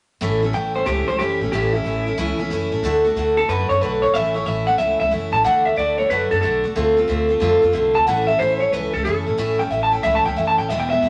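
The picked steel-string acoustic guitar and the upright bass start together at 0.2 s, the guitar full-bodied and up front with a dreadnought's depth, the bass thumpy and woody on gut strings. At 0.5 s an electric guitar through a small old amp takes the melody, twangy and slightly broken-up, sitting at the front of the mix above the other parts. This is rollicking, rowdy rock in A major at a brisk 183 BPM in 4/4, with a 65% swing on the eighth notes. The chords move from A to D and back, return to D, then shade into a Dm7 before resolving to A. Moderate studio reverb gives this short excerpt some room, and the top end is rounded off above 11 kHz.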